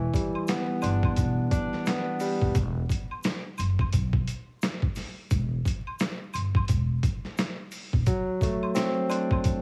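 Vinyl crackle and the ambience of a small room frame this dark, tough boom-bap hip-hop excerpt, which moves at 87 BPM in E minor with a swung sixteenth-note feel. A bright, barky tine electric piano sits up front through a cassette-tape haze and filtering, sounding chords over Em7 and B5/E before dropping out at 2.6 seconds. A woody, steel-strung upright bass, played pizzicato, carries the low end until 8.0 seconds. The drums come from a sampler-style kit that is compressed, pitched down and muffled, with a thumpy kick, a medium-tuned snare and hi-hat, all re-recorded in a small room and placed up front. Beneath them, a quieter layer of egg shaker, woodblock and group handclap adds acoustic texture, and the electric piano returns at 8.1 seconds on a D7 chord.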